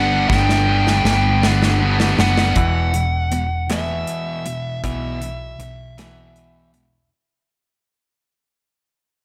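Quiet-loud alternative rock in E minor, angsty and brooding at a slow 53 BPM in 6/8, where an up-front bluesy overdriven lead guitar sings a melody through distortion and digital delay over a dark fuzz guitar riff, a bright overdriven electric guitar riff that stops at 2.6 seconds, a round, up-front hollow-body short-scale fingered bass and a big rock drum kit with a punchy kick and a fill from 0.3 seconds, before a twangy clean guitar enters with delayed arpeggios at 2.6 seconds as the Gmaj7 gives way to E5 and this excerpt from a longer piece fades out in studio reverb.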